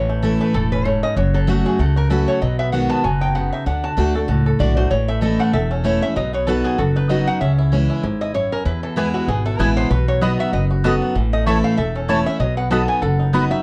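Bluegrass at a brisk 192 BPM in 4/4 with a light swing, rustic and virtuosic in mood, cut from a longer piece. A slide-played lap resonator guitar with a metallic, nasal voice shares the melody with a twangy, percussive fingerpicked banjo, while a bright, full-bodied picked steel-string guitar and a woody, thumpy pizzicato upright bass sit up front. A mellow double-strung mandolin adds stabs from 9.0 s over chords moving through A, F#m, B6, D and on to C#m and E, all in a dark, warm production with light reverb.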